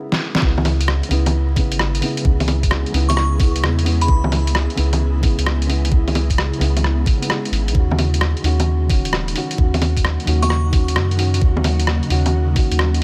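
Wistful and rainy, this future garage excerpt moves in a swung 4/4 over a dry, close sound dusted with vinyl crackle. A felt-muted upright piano plays soft, boxy accompaniment from the start, its hammer action audible, colored by tape echo and a sidechain pump, while a compressed, pitched-down sampler kit of bongos, hi-hat, rim click and a muffled snare opens with a short fill. At 0.4 seconds a knocking, layered electronic kick arrives up front alongside a deep, round dub sub bass, the bass gently pumping as the harmony settles on C#m7 before shifting to D#m7 at 7.7 seconds. An ethereal, detuned pad of chorused, phased chords sits in the background, its slow attack and long release adding an airy haze. A crystalline FM bell with chorus and delay offers brief high melodic touches, first appearing at 3.1 seconds and returning for a moment near the end.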